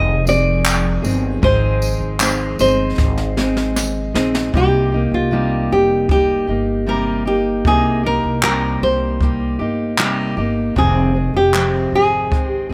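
A fingerpicked nylon-string guitar with fresh strings and audible finger squeak carries the wistful, reflective melody in this short acoustic pop passage in C minor at 77 BPM, over a full-bodied fingerpicked steel-string guitar, a woody, thumpy pizzicato upright bass, and a brushed jazz kit with a boomy kick, high-tuned snare and handclaps. A jingly tambourine plays until 3.9 seconds, and a very quiet, glassy FM pad holds ethereal chords until 4.5 seconds, as a drum fill starting at 3.0 seconds leads the light-reverb mix from Fm7 and Ab into Cm7 at 4.5 seconds.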